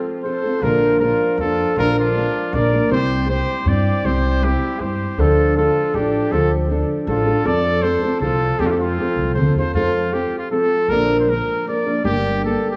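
Mariachi-flavored Mexican folk in a festive, proud 3/4 at 157 BPM in F major, cut from a longer piece, where a bright, up-front trumpet carries the classical-style melody through a tape echo while a clear second trumpet with light vibrato and a smooth top sits in the background until 9.4 s, a fingerpicked nylon-string guitar with audible finger squeak plays up front, and a woody, thumpy pizzicato upright bass on gut strings enters at 0.6 s, all heard through worn, warbling cassette tape with pitch drift and a wet recital-hall reverb.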